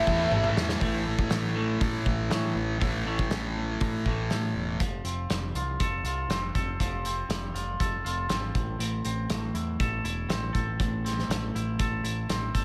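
This brooding, angsty quiet-loud alternative rock excerpt opens with a brief dark, lo-fi lead guitar through a small cranked amp with overdrive and analog delay, a bright cranked stack guitar in the background and a compressed, up-front fuzz guitar, over a drum fill from a loose indie kit with a punchy kick, rolled-off top and pumping room sound, until a clean, scooped, twangy electric guitar enters with delayed arpeggios from 0.8 seconds, the fuzz drops out at 4.8 seconds, and a round, dark overdriven picked bass holds the low end in a small room.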